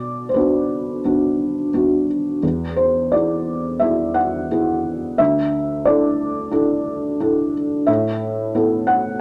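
A felt-muted upright piano plays alone throughout this brief excerpt of neoclassical minimalist piano, its thick felt giving a soft, mellow tone with short sustain that sits intimately up front. The mood is reflective and melancholic, moving at about 87 BPM in 4/4 with a rubato feel that lets the time breathe. The harmony passes from Bm to E, then to Dsus2 at 5.2 seconds and Asus2 at 7.9 seconds, with the piano ranging from D2 up to F#5. A wet studio reverb with a short decay surrounds the instrument, and a faint mains hum lingers beneath it. Tuned slightly low at A4 = 439 Hz, the fragment is cut from a longer piece and ends at 9.2 seconds.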